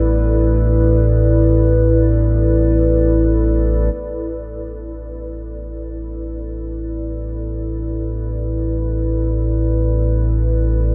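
Cavernous and unsettling, this dark ambient drone drifts in free time, cut from a longer piece and resting on an Asus2 chord. A deep, ominous drone rumbles between A1 and A2 with its own built-in reverb, while a moody, detuned analog pad holds sustained chords from E4 to D5 under a subtle chorus, its wave-folded edges softened by slow attacks and long releases. Both parts sit up front in a huge ambient reverb with an 8.8-second decay, and each fades in from 3.9 seconds until the close at 10.9 seconds.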